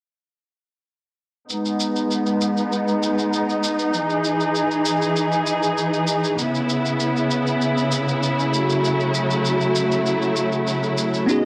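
Blissful and sunny, this sunset chillout piece moves at 98 BPM in a straight 4/4, set in B mixolydian and tuned slightly low to A4 = 438 Hz. From 1.5 seconds a rich, lush symphonic string section holds smooth, bowed chords with vibrato, up front and close, its tone roughened by vintage 12-bit sampler grit and darkened by a low-pass filter that sweeps across the passage. An electronic, layered shaker sits low in the mix beneath the strings, its sound re-recorded in a small room. The harmony moves from B6 to Emaj7, then C#m7 and F#m7/C#. At 11.3 seconds a brilliant, clean, bell-like tine electric piano appears for only a brief moment, direct and forward. A moderate hall reverb softens the whole piece, and worn cassette tape adds a warbling pitch drift to this section cut from a longer work.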